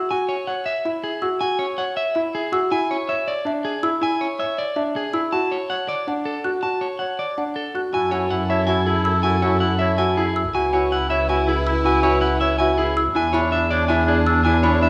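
An excerpt of minimalist classical pattern music, bathed in a moderate scoring-stage reverb, moves at 322 BPM in eighths through a straight 7/8 with a meditative yet urgent pulse. From the start, a brilliant grand piano and a woody, mellow xylophone played with soft rubber mallets circle in arpeggios, the xylophone set in the background, while a slightly broken-up electric guitar carries the picked melody up front. At 7.9 seconds a smooth-topped solo oboe adds a second line, a lush bowed violin section sustains chords in the background, and a single bowed double bass enters with expressive vibrato and portamento as the harmony moves from C#m, E7 and Dmaj7 to F#m7, C#m7 and E7.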